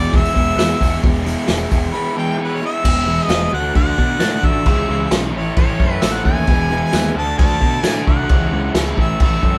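A clear, lightly vibrato-touched harmonica with overdrive leads this raw, swaggering garage rock excerpt at 132 BPM in E major, soloing over a crunchy, double-tracked overdriven guitar riff, a growling overdriven picked bass, a punchy up-front vintage drum kit with a medium-tuned snare and rolled-off top, a very quiet buzzy combo organ holding sustained chords, and a jingly tambourine tucked in the background, all captured as a band playing live in one room with light reverb, with a break at 1.9 seconds before the chords begin cycling through E, D, C#m and A.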